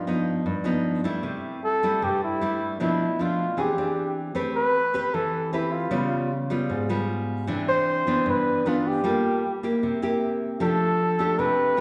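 A breathy, close-miked flugelhorn sings a relaxed, breezy bossa nova melody in jazz style, with vibrato and scooped notes, over a full-bodied, fingerpicked nylon-string guitar with fresh strings, both up front in the wet reverb of a church or concert hall, moving at 4.4 s into a second section of shifting harmony in this short cut from a longer piece.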